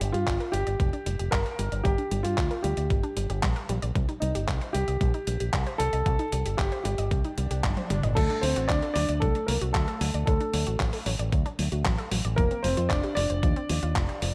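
A dark, mellow baby grand piano carries the melody up front, its action noise audible and its notes trailed by delay, in this danceable, nostalgic italo disco excerpt cut from a longer piece. A bright, envelope-filtered fingered bass with tube saturation sits alongside it, while a detuned sawtooth unison pluck plays arpeggios through digital delay in the background, over a thumpy electronic kick and a clean 12-bit drum machine of hi-hat, handclaps, toms and crash cymbal that sounds re-recorded in a large room. Vinyl crackle and light reverb colour the whole mix, and a faint swell from 7.4 seconds and a drum fill from 7.6 seconds lead the harmony from G minor and C minor into D at 8.2 seconds, settling on F5 at 12.4 seconds.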